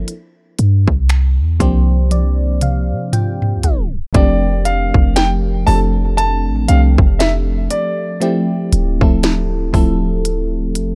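Moody and longing, this contemporary R&B piece swings its 16ths beneath a warbling, phased FM electric piano, a deep, boomy 808-style bass and a trap drum kit of hard-clipped kick, sharp snare, crisp hi-hats, toms and finger snaps, as electric piano and drum fills lead into a tape stop at 3.6 s before an intimate grand piano, with audible action noise and tape echo, carries the melody from 4.1 s to 8.7 s within a dark, dry production.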